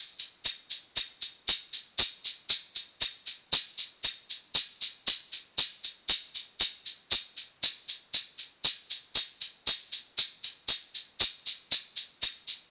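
A straight bossa nova pulse in 4/4 comes from a lone tube shaker, which enters at 0.2 seconds and carries this sunny, relaxed fragment of a longer piece through to its close at 12.7 seconds. The shaker sits up front with a grainy, bright acoustic tone and the feel of a small room. Close, detailed miking and little reverb keep the sound dry and intimate.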